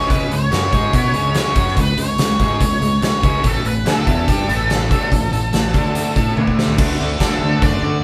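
A dark, fuzzy octave-fuzz lead guitar with wah and distortion carries the melody up front in this driving, sunny classic rock passage, over a punchy, up-front big rock drum kit with bright cymbals in a bright stone room. Two picked electric guitars, one cranked through an overdriven stack and one distorted, churn out riffs in the background, while a growling, overdriven fingered bass anchors the low end. A drum fill at 6.4 s leads into a new section at 6.8 s, where a shimmering, octave-doubled twelve-string acoustic guitar joins in the background, all captured as a band playing live in one room with moderate studio ambience.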